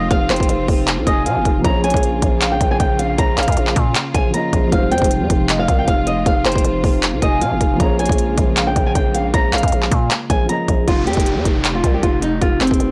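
An eerie, menacing trap cut opens with a fingerpicked flamenco guitar carrying the melody, its fresh strings and finger squeaks softened by a low-pass filter, while a hollow, clarinet-like synth lead with chorus and delay traces a second line in the background over a dark, mellow grand piano and bowed, woody strings. Beneath them, a growling, buzzy 808-style bass with tube saturation and an up-front trap kit of hard-clipped kick, crisp hats and handclaps drive a half-time feel through Fmadd9 and Bbm7 chords. At 10.9 s the piano, strings and synth lead have dropped away, and an electronic downlifter sweeps in over guitar, bass and drums on an Fsus2, all in a blown-out, overdriven, dry mix.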